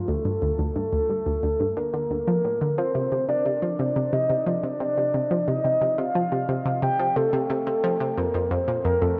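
A soft, octave-layered synth lead and a bright analog pluck begin together at 0.0 seconds. The lead carries a dark, wave-folded melody with vibrato and a sub octave, while the detuned pluck plays a low riff laced with ring modulation and a filter sweep, both treated with chorus and delay. This mysterious, hypnotic ambient passage, cut from a longer piece, moves at 89 BPM in a straight 4/4 tuned to A4 = 445 Hz, its harmony passing from D5 to Cm69 and reaching Fsus4 at 8.2 seconds, all bathed in a lush hall reverb with a 2.9-second tail.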